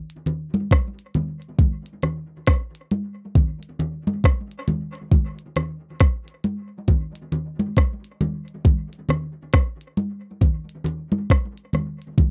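Reggae at a slow 68 BPM in 4/4 with a swung sixteenth-note feel, this hazy, spacious cut opens with a glitchy electronic drum kit of soft kick, clicky hi-hats and rim click, tape-warm and up front, joined at 0.3 seconds by ringing, medium-tuned acoustic congas that sit close, dry and up front, carrying a dub echo, all captured in a dry, close 1970s-style studio sound.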